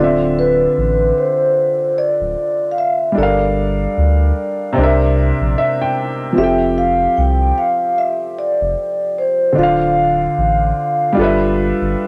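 A slow, melancholic hip hop piece at 75 BPM opens with vibraphone, upright piano and sub bass all sounding together in D minor, cut from a longer work. The soft-mallet vibraphone carries the reflective melody in a ringing, airy tone with slow motor vibrato, passed through a low-pass filter, cassette tape coloring and analog delay before it drops out at 11.1 seconds. Beneath it, the woody, vintage upright piano plays accompaniment with long sustain, sitting up front under its own low-pass filter and cassette tape coloring, and adds a brief fill at 5.2 seconds. A deep, round dub sub bass holds the low end with a sustained, soft tone, also placed up front. The harmony moves through Dm7, Gm7, C9 and Fadd9 before returning to Dm7 and landing on G13, all over a lightly swung 16th-note feel. Light reverb and the hazy character of a home cassette recording give the passage an intimate, worn atmosphere.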